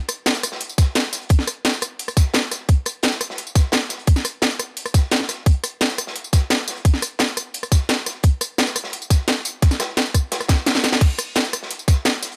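A straight 4/4 drum and bass groove at 173 BPM sets a dark, futuristic mood in this fragment from a longer piece, built from a tight, overdriven electronic kick entering up front at 0.8 s, an overdriven electronic kit with a cracking snare, bright hi-hats, crash cymbal, rim click and tambourine, and a gritty, saturated acoustic breakbeat kit of high-pass-filtered hi-hat and medium-tuned snare sitting in the background with a rolled-off top, all in a small room ambience, with a drum fill at 10.5 s.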